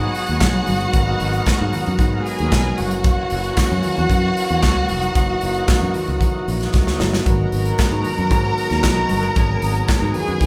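A straight disco groove in 4/4 rolls from the drum kit's tight kick, medium-tuned snare, hi-hat and handclaps, sitting up front, while very quiet ringing congas and a jingly tambourine fill out the percussion, giving this glamorous, sultry fragment of a longer piece its pulse. A round, dark fingered electric bass anchors the G#m7 to F#7 movement as a gritty, overdriven tonewheel organ holds thick sustained chords with key click, chorus vibrato and a slow rotary speaker. A lush bowed string section carries a smooth second line above, and a drum fill at 6.7 seconds leads back to the opening chord, the whole band sounding live in one reverberant studio room.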